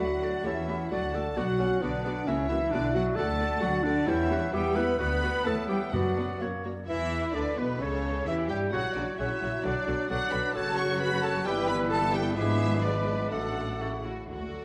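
A concert-hall bloom surrounds this quick, dramatic classical-period orchestral passage in 2/4 at 131 BPM, cut from a longer piece and settling into B minor from 3.2 s, where a lush, expressive violin section carries the restless melody over a second violin line, an airy, hollow flute, a punchy oboe and a smooth clarinet. Beneath them a bassoon and a focused viola section fill out the accompaniment, a very quiet, dark horn section holds sustained chords, and bowed cellos and double basses anchor the bass with vibrato. Round, soft-mallet timpani sound only briefly from 5.9 s to 6.4 s before the harmony darkens through diminished chords and arrives on an A chord at 13.8 s.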